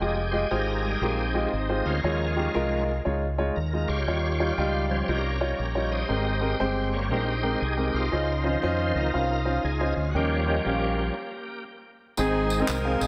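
A lush hall reverb frames this uplifting, jubilant uptempo gospel excerpt in Ab major, swinging at 118 BPM, where a bright, shouting tonewheel organ with slow rotary speaker and chorus vibrato takes the lead over woody upright piano and a deep, round dub electric bass, moving through chords from Fm9 to Eb7. The organ solo breaks to a stop at 11.2 seconds, and at 12.2 seconds the harmony lands on Ab as a tight, smooth-topped saxophone section enters with the melody, joined by close, dry tambourine and group handclaps.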